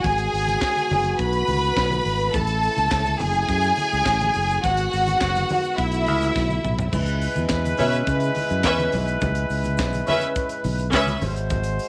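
A straight 4/4 disco groove sets a sultry, glamorous mood in this short cut from a longer piece: a tight funk drum kit with a high-tuned snare, handclaps and a drum fill leading into a new section at 6.9 seconds; growly, punchy fingered electric bass; very quiet low-tuned congas and a grainy tube shaker entering at 2.3 seconds; lush, bowed strings carrying a second line up front; mellow French horns holding sustained chords until 6.9 seconds; and a clear horn section taking over with punchy stabs, all in light small-room reverb.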